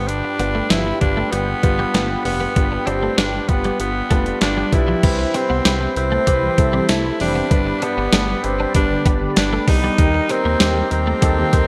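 This is a 1980s-style pop cut from a longer piece, nostalgic and romantic in mood, in a straight 4/4 feel. A raspy, gritty tenor saxophone carries the melody up front, forceful yet smooth on top with a light vibrato, bathed in shimmer reverb and delay. Beneath it a polished grand piano and a detuned analog pad with chorus, tremolo and phaser fill out the harmony, while a clean, compressed twelve-string electric guitar picks a riff in the background through ensemble chorus and delay. A dark, sawtooth-and-triangle synth bass holds the low end, and a 12-bit digital drum machine with a thumpy kick, medium-tuned snare, hi-hat, crash and tambourine sits up front in gated reverb. At 5.0 seconds the harmony moves from G7 to Cmaj7, and mellow, round synth brass stabs with a filter sweep join at 6.4 seconds, all set in a lush hall and a bright digital production.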